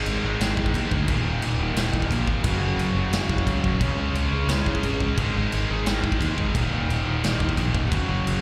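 A live-gig sound heard through the venue's PA, with recital hall reverb, carries this aggressive, heavy metal fragment in Eb minor at 176 BPM. A scooped high-gain guitar with slapback echo grinds out a riff while a crunchy overdriven guitar and a second scooped high-gain guitar churn out riffs in the background. A bright, growly fingered electric bass digs in from 0.1 s, and an up-front big rock drum kit with a tight kick, medium-tuned snare and bright crash drives through chords of Ab5, Eb5, Gb5 and Db5.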